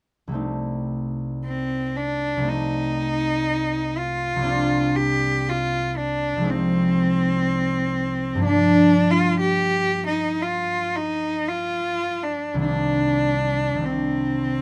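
A concert harp opens at 0.3 seconds, its mellow, ringing fingerpicked chords sitting low and up front in this impressionist classical duo. At 1.5 seconds a single bowed cello enters with the melody, its tone clear and focused, with a vibrato that sounds close and intimate. The pulse is slow and uneven, stretching and pulling in a free rubato that gives the music a hazy, mysterious mood. The harmony drifts through shadowy minor colours, moving from a C minor sixth chord through Fm7 and Gm7 before settling on a Cmadd9 near the end. The dry, detailed sound keeps both instruments vivid, and this short cut from a longer piece runs until 14.6 seconds.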